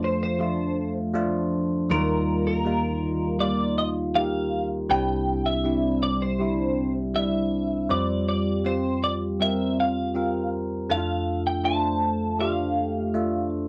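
A straight 4/4 pulse at 80 BPM carries this tender, emotional pop passage in F major, cut from a longer piece. A bell-like tine electric piano, clean and up front with a phaser, holds the accompaniment from C2 to C5 through Dm/F, Ebadd9, Cadd9 and Fsus2. Over it, a twangy, compressed twelve-string electric guitar picks the melody between Bb4 and A5, its bright tone thickened by analog chorus and slapback echo, all set in a dry, close 1970s-style studio sound with light reverb.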